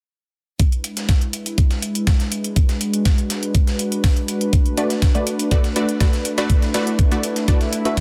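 A dense, heavily limited modern master with light digital reverb frames this expansive, dreamy progressive house excerpt at 122 BPM, where a smooth, detuned sawtooth analog pad with chorus and sidechain pumping holds sustained chords from E7 to Bm7 under a filter sweep. A knocking, up-front electronic kick drives the straight 4/4 groove alongside crisp layered electronic hi-hats and a gritty, compressed sampler-style breakbeat kit with a medium-tuned snare and high-passed, pumping hats. At 4.8 seconds a bright, punchy unison pluck enters with detuned sawtooth stabs, wave folding, a noise layer and tape echo, and a background electronic swell enters at 7.6 seconds.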